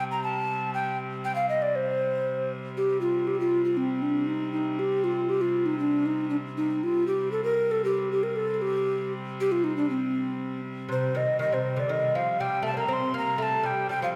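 Set in a recital hall with a 1.4-second reverb and heard from further back in the room, this cut from a longer medieval dance has a driving yet mysterious character at 118 BPM in 2/4, with a straight feel in C dorian, tuned to A4 = 438 Hz. A mellow, hollow wooden tenor recorder carries the melody up front from the start, ranging from C4 to C6, its tongued notes showing a breathy chiff and touches of vibrato. Beneath it, a rich, nasal hurdy-gurdy holds a reedy, close drone between C3 and G3 throughout, its wheel-bowed tone carrying an airy edge. At 10.9 seconds, as the piece moves into a new section, a delicate fingerpicked lute enters up front with a second line from C3 to C4, its gut double strings, some doubled at the octave, lending a plucked shimmer. The recorder stops at 14.1 seconds, and the drone and lute ring on until 14.2 seconds.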